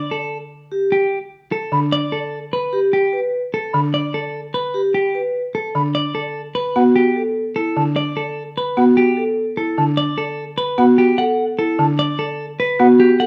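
A bright, twangy clean electric guitar carries the melody up front in this hypnotic, meditative excerpt of minimalist classical pattern music in E minor at 149 BPM in 5/4, joined from 0.7 seconds by ringing vibraphone arpeggios and from 1.7 seconds by buzzing, woody marimba accompaniment and airy, hollow flute arpeggios with vibrato, all moving from Gadd9 to E7sus2 in a dark production with moderate large studio reverb.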